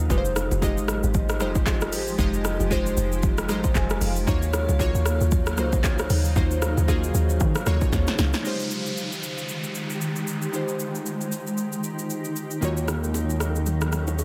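Amapiano at 115 BPM with a 16th-note swing, deep and soulful, where glassy chorused digital keys and a blurred granular cloud pad with sidechain pumping hold Fm9 and Ebm9 chords over a round, percussive log drum bass and an overdriven, up-front deep house kit with punchy snare and metallic hats, very quiet congas and bongos adding acoustic color, until a downlifter at 8.4 s opens a sparser passage and a fat, detuned analog bass arrives at 12.6 s as the percussion returns in this cut from a longer piece.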